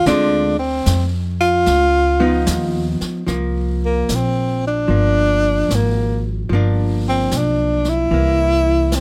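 A slow 4/4 swing at 74 BPM sets the pace for this smoky, melancholic jazz ballad, cut from a longer piece and tuned slightly sharp at A4 = 445 Hz. A mellow tenor saxophone carries the melody up front, its subtone and vibrato giving a breathy, velvety voice with scooped notes, and from 3.3 seconds it moves into a solo over the second section. Beneath it, a woody, growly upright bass sits close and present, while a dark, clean archtop guitar, hollow-bodied and compressed, picks out the accompaniment through changes such as Dm7b5, Db9, C9sus4 and Gm7 before landing on C7. A jazz brush kit stays far back in the mix, with brushed snare and hi-hat adding a soft, natural texture. Close, detailed microphones and very little reverb make the sound intimate and dry.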